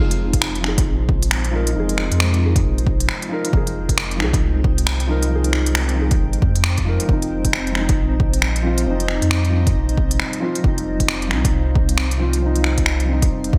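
A light reverb and digital ambience give this short excerpt of future garage a glossy, 1980s-style digital sheen, suited to a nocturnal, rainy mood. At 135 BPM in 4/4, with a 61% swing on the sixteenths, an up-front drum kit of finger snaps and crisp hi-hats, carrying gated reverb and a tape-tinged character, opens the groove, and a punchy, layered electronic kick enters moments later to anchor it. Underneath, a round sine sub bass with tube saturation holds the low end. A soft, felt-muted upright piano, dark and intimate with audible action noise, carries 12-bit sampler grit and digital delay, while a blurred granular cloud pad sustains evolving chords beside it. The piano, pad and bass all pump against the kick as the harmony moves from Fm7 to Cm/F at 7.1 seconds in F minor.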